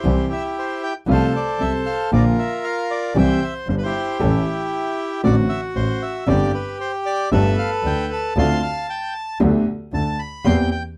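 Tango at 115 BPM in 4/4 with a rubato feel in C major, this short, nostalgic and playful passage cut from a longer piece has a reedy, up-front bandoneon carrying the melody over concert grand piano accompaniment with deep bass and short sustain. A single bowed double bass adds a biting, nasal tone with light vibrato, and all three parts play together from start to finish through a harmony that moves from C through Bb, A and D7/A to Gadd9 and lands on C7/E. The sound is dry and close, in the manner of a 1970s studio recording.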